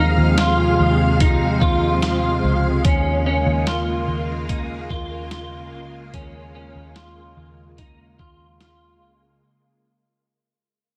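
A dusty, sampler-style drum kit sits up front, its gritty, compressed hi-hat, thumpy kick and medium-tuned snare entering at 0.4 seconds and stopping at 8.8 seconds. This short excerpt of hazy, haunting dream pop moves at 73 BPM in a straight 4/4, fading out from start to finish. A soft string machine holds silky, slow-attack chords with ensemble chorus, while a clean, hollow-bodied semi-hollow electric guitar plays up-front arpeggios through chorus and digital delay. Underneath, a vintage foam-muted picked bass gives a dark, round, punchy low end. The harmony moves from Fm/Eb to Bbm7 at 2.8 seconds, and the whole mix has light reverb and a heavily compressed radio sound.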